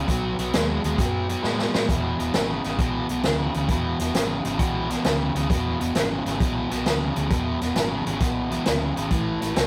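Soulful and gritty, this electric blues shuffle in E mixolydian swings at 133 BPM in a short cut from a longer piece, captured in a rough rehearsal room with light reverb and saturation. A biting, overdriven picked guitar riff with spring reverb sits up front beside a swinging big-band drum kit with a punchy kick and medium-tuned snare. A dark, round, foam-muted fingered electric bass plays the low end. A drum fill at 1.4 seconds ushers in the next section, where the harmony moves from B6 to E6 and reaches A6 at 9.1 seconds.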